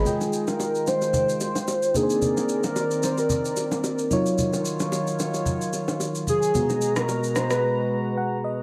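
Deep and late-night, this amapiano excerpt moves at 111 BPM with a gentle 16th-note swing, its velvety synth lead carrying the melody with chorus and digital delay over a round, dark FM electric piano and a smooth, warbling analog pad up front. An electronic shaker and rim click, re-recorded in a small room, join acoustic congas and bongos from 0.1 to 7.6 seconds, while the chords pass through Fm9, Cm9, Ebm9 and Abm9. Light reverb and digital ambience surround the parts, and the electric piano closes with a fill from 7.9 seconds.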